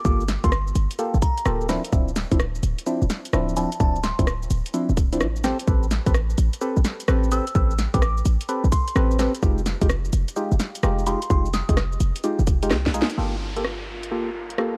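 Soulful and moody, this two-step UK garage excerpt in G dorian moves at 128 BPM on swung 16ths, built on a tight, layered electronic kick, a garage kit of cracking snare, warm hats, rim click and shaker, and a punchy, sine-based 808-style bass with sidechain pumping. Hollow, wave-folded organ stabs treated with chorus and phaser run throughout, while a glassy, crystalline FM bell carries the melody in two phrases, warbling through chorus and analog delay. After a drum fill and a band accent at 13.0 seconds, a downlifter and a soft, breathy pad with a slow attack enter at 13.2 seconds, and the recording carries a dry, gritty hardware character dusted with vinyl crackle.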